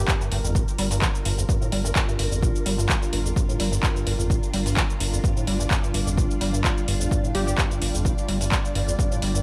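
Hypnotic and gritty, this acid house piece, cut from a longer track, runs at 128 BPM in a straight 4/4 in G minor, resting on a single Gm7 chord. A squelchy, resonant acid bass riff runs throughout, its filter sweeping across the whole passage, with overdrive, lush chorus and dub echo. Beneath it, a deep, thick sub bass holds G1 with tube saturation and sidechain pumping. A vintage string machine spreads full, slow-attack sustained chords from G3 to D5, colored by phaser and ensemble chorus and pumping against the beat. Up front, a punchy, tape-warm electronic kick and a dry analog drum machine with handclaps, metallic hats and shaker enter at 0.1 seconds, set in a small room. In the background, a glassy, crystalline wavetable pluck touches G4 at the start and again at 7.3 seconds, trailing chorus and dub echo, all under a light reverb.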